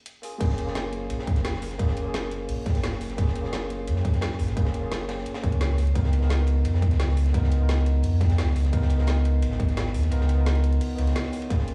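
A bell-like tine electric piano opens this uplifting, lush liquid drum and bass cut, its bright, clean chords carried by tape echo. At 0.4 seconds the drop arrives: a tight, up-front electronic kick and a deep, full sub bass with an added octave, whose mellow sine tone is thickened by tube saturation. Two drum kits run together. A produced electronic kit brings a woody snare, metallic hats and crash cymbal, while a quieter breakbeat kit adds gritty, saturated hi-hat, ride and a high-tuned snare; it is high-pass filtered, and its dark cymbals sit with a rolled-off top. Harmony moves from F#maj9 to C#13. The kick drops out at 10.1 seconds and returns at 11.5 before this fragment of a longer piece cuts off, with the mix set in a small room ambience with a large studio reverb.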